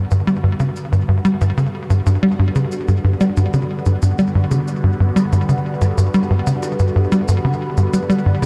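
Steeped in a huge ambient reverb with a long 8.8-second tail, this dark, warm short cut from a longer piece of sequencer-driven space music feels expansive and cosmic. It moves at 92 BPM in a straight 4/4, sitting in G lydian over a single Gmaj7 chord. Up front, a tight sequencer bass drives a punchy riff built from sawtooth and square waves, with a fast-attack filter pluck, decaying notes, a moving notch, subtle chorus and delay. Behind it, a phased analog pad holds sustained chords, its detuned sawtooth tone swirling and evolving with an airy noise layer, slow attack and long release, fading in across the full 8.5 seconds. Shaker and percussion blips enter at 0.1 seconds, faint, electronic and tape-warm, re-recorded in a small room and touched with delay as they fade in alongside the pad.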